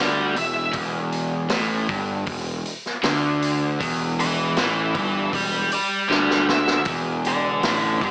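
Heard through a small-speaker sound with a moderate studio reverb, this brooding, gritty fragment of blues rock and southern rock is cut from a longer piece and runs just over 8 seconds in a straight four-beat feel on a single E minor chord. A dark, fuzzy octave-fuzz lead guitar carries the melody in a high register, its picked, distorted notes trailed by a slapback echo. Beneath it, a double-tracked, compressed overdriven electric guitar grinds out a low riff, while a picked electric bass adds bright, growly overdrive from the very bottom of the range. The vintage drum kit enters at 0.4 seconds with hi-hat, a tight kick and a high-tuned snare, its saturated, mid-forward sound rolled off at the top. A drum fill arrives from 6.1 to 6.9 seconds in the power-trio arrangement, where every part sits up front.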